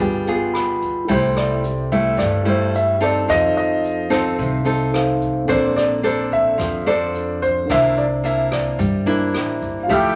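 Sunny and relaxed, this bossa nova excerpt at 109 BPM in C major sets an intimate grand piano melody with audible action noise over a mellow tine electric piano that adds a fill at 0.3 seconds, an up-front fingerpicked nylon-string guitar with finger squeak, a woody, growly pizzicato upright bass, a distant brushed drum kit with boomy kick, hi-hat and rim click, and a grainy tube shaker in the background, while an airy silver flute with vibrato slips in at 9.9 seconds, the whole group heard in a large studio reverb.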